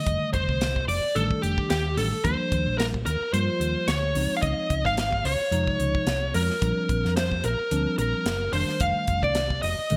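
Electric jazz fusion at 110 BPM in 4/4 with a light sixteenth-note swing, this soaring, slick passage is cut from a longer piece and sits in F mixolydian, moving from F13 through Ebmaj7, Dbmaj9 and Bb69 before returning to F13 at 8.5 seconds. A smooth, overdriven lead guitar carries the melody up front, picked with a warm edge, while a dark, clean archtop guitar, miked and amplified, traces a second line in the same register from the background. A tine electric piano fills in the accompaniment with a clean tone through its built-in speakers, colored by a phaser. From 0.1 seconds a round, hollow-body short-scale electric bass played with the fingers adds a dark, amped low end, alongside a dry, airy and polished tight funk drum kit whose hi-hat, medium-tuned snare and tight kick are shaped by gated reverb. A moderate plate reverb and bright 1980s-style digital production give the whole passage a studio sheen.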